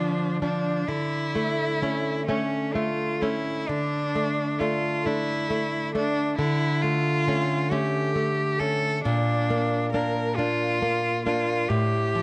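Heard up close and in fine detail within a moderate recital-hall reverb, this melancholic, yearning romantic duo in D minor moves at a rubato 44 BPM in dotted quarters in 12/8, with a rich, smooth, vibrato-laden bowed cello singing the melody up front over a bright, small-bodied fingerpicked nylon-string guitar accompaniment, both playing throughout this 12.2-second passage cut from a longer piece.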